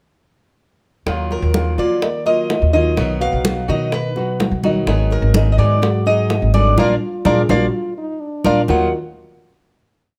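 At 126 BPM in a straight 4/4, the congas set the groove from 1.1 seconds with slaps and open strokes on thick, hard-hit skins. The tight, high-tuned bongos keep steady eighths with a hand bell further back in the mix. Underneath, a woody, growly pizzicato upright bass sits up front with a syncopated figure, while a dark, boxy grand piano plays montuno in octaves and a fingerpicked flamenco guitar adds strummed chords with muted slaps and the odd finger squeak. Over this nostalgic, sultry Cuban son and guajira in Eb harmonic minor, the metallic double-stringed Cuban tres carries a motif-based melody of call phrases. At 7.0 seconds a smooth-topped French horn with vibrato and slapback echo enters, answering in the melody's rests, as the band accents the passage before settling on a final Ebmadd9 chord at 8.7 seconds. The close, detailed sound has a light reverb that keeps this short complete piece intimate.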